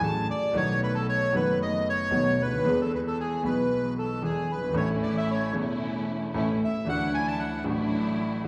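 A reedy, dark bandoneon carries the melody up front in this playful, elegant tango fragment with a rubato feel, over smooth, vintage grand piano accompaniment, while a lush, bowed string section with expressive vibrato adds stabs from 4.8 seconds, all in the wet reverb of a recital hall.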